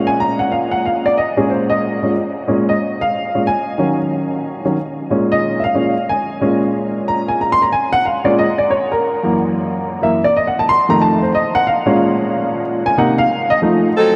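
An intimate, woody upright piano with audible action noise plays alone from 0.0 to 13.9 seconds in this dramatic, swinging jazz fragment in Bb minor at 183 BPM, moving through Bbm7, Ebm7, Gb7 and F7 before a tight, up-front saxophone section with light vibrato and a smooth top enters at 14.0 seconds, the music set in a huge, wet ambient reverb that suggests a vast, echoing space.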